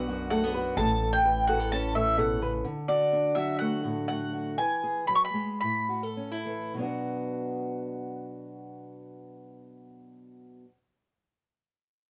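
Wistful and stirring, this short folk passage in B minor moves in a straight 4/4 at roughly 102 to 128 BPM, and it is cut from a longer piece. A round, double-strung mandolin carries the melody up front until 6.1 s, over a dark, fingerpicked steel-string acoustic guitar that holds the accompaniment through to 10.7 s. For the opening 2.6 s, a bright, thumb-plucked ukulele adds light arpeggios while a woody, growly pizzicato upright bass thumps beneath them. The chords move from B minor to Aadd9, and from 2.6 s the tempo slows as the harmony passes through D, E and Aadd9 again before settling back on B minor at 6.7 s, where the second section leaves the guitar alone. The sound is that of a rough rehearsal-room take, with a moderate small-room reverb around the players.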